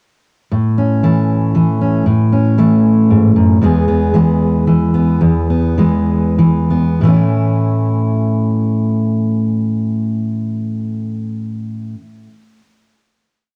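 Indie folk in waltz time with a warm, nostalgic mood, carried by a solo fingerpicked steel-string acoustic guitar that enters at 0.5 seconds. The full-bodied jumbo guitar sits up front, with an alternating-thumb fingerstyle moving from A to E and slowing from 3.6 seconds before settling on a final A chord at 7.0 seconds. Light reverb and the character of a cassette home recording give the piece an intimate, homespun feel.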